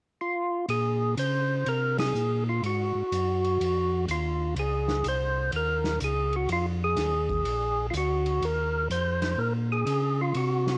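Soulful and late-night, this short cut from a longer soul jazz organ trio swings at 124 BPM in Bb minor, as a percussive, lightly overdriven tonewheel organ carries the melody from 0.2 seconds through slow rotary speaker and cassette tape grit, a mellow, round organ bass with key click joins at 0.7 seconds, and a vintage kit with a punchy kick and dark cymbals sits back in a pumping small room, with the band hitting an accent at 1.9 seconds over changes moving from Bbm9 through Ab5, Dbsus2, Ebsus24 and Bb7b13 to Ebsus2 on a homespun cassette recording.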